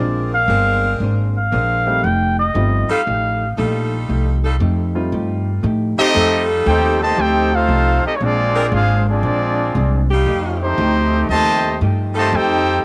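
Energetic, swinging jazz at 117 BPM in F mixolydian, cut from a longer piece, where a veiled cup-muted trumpet carries the melody with vibrato until 3.5 s over a dark, clean hollow-body electric guitar, an intimate baby grand piano with audible action noise that stops at 5.6 s, sustained saxophone section chords and a woody pizzicato upright bass up front, before a clear, tight trumpet section takes over the melody at 6.0 s with a brilliant trombone section playing a second line in the background, set in light reverb and studio ambience.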